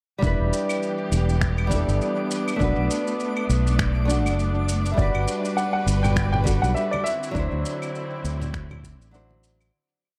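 Wistful and relaxed, this short sunset chillout piece rides a light, swung groove. Fingerpicked nylon-string guitar chords with syncopated pushes sit up front beside a syncopated fretless bass riff, carried by a lush, distant bowed string pad, a deep overdriven soft kick and a gritty, tape-warm lounge beat of shaker, claves and finger snaps. A twinkling granular shimmer holds a high note in the background from 1.0 seconds, a dark, intimate baby grand piano picks out a motif-based melody from 4.9 seconds, and very quiet low-tuned congas join at 6.0 seconds, shortly before the echo-heavy mix begins to fade out.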